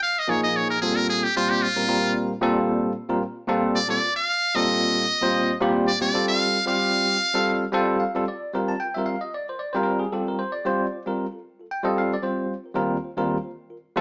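A lightly swung jazz fragment with a soaring, bright mood opens on a forceful, close-miked solo from a trumpet with a metal mute, buzzy and thin with light vibrato and scooped notes, that leads up front until 7.7 seconds, while a bell-like tine electric piano enters at 0.3 seconds to accompany, adds a fill from 7.5 seconds and carries on alone to 14.0 seconds, all captured as a band playing live in one room with moderate studio reverb and a small-speaker sound.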